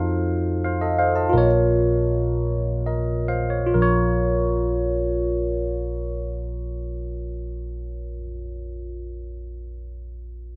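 This rough home demo has a light touch of digital reverb and ambience, with a single electric piano sitting close and up front. It is a short fragment of a longer gospel piece in a straight 6/8, soulful and fervent in mood, and tuned slightly sharp of standard pitch. The tine electric piano plays alone throughout, its bright, clean voice colored by a phaser and spanning from deep bass notes up into the high treble. The opening passage slows as the harmony moves from F7 to B-flat minor at 1.3 seconds. A second passage begins at 3.7 seconds and carries the piano's earnest, churchy feeling on to 9.2 seconds.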